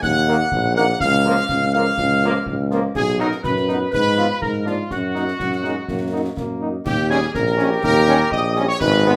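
Stern and resolute, this military-style march for wind band moves at 123 BPM in a straight 2/4, set in Eb minor and cut from a longer piece. A bright, tight trumpet section carries the melody with a present sound, while a dark woodwind section sits distant in the background and a pure, expressive piccolo with vibrato and tongued notes plays the second line an octave higher. A warm tuba anchors the bass, present and up front, with concert snare drum, concert bass drum and clash cymbals with dark cymbals heard in a live room. From 0.3 seconds a mellow, very quiet French horn section adds loose accompaniment and a clear trombone section holds sustained chords, and at 5.4 seconds a distant, roomy euphonium joins the second line. The harmony moves from Ebm through B and a diminished chord to Eb7 at 6.9 seconds, as the opening phrase repeats, all within a moderate large studio reverb.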